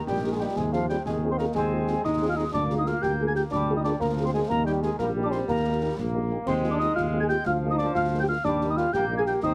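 In a straight 6/8 at 122 BPM (dotted quarters), this rousing, festive military-style march for wind band in Eb major moves from Eb through Fm7/Eb and Bb7/D in a short passage cut from a longer piece. A dark, punchy tuba sits up front on the bass while a clear euphonium and a pure, wooden piccolo with expressive vibrato carry second lines. A vintage, tight trombone section holds sustained chords, soft-attacked French horns add close-miked accompaniment, a mellow cornet carries the melody in the background, and acoustic concert snare, bass drum and clash cymbals play in a small room. Light reverb surrounds it all, and the whole band is squeezed into a heavily compressed, radio-like sound.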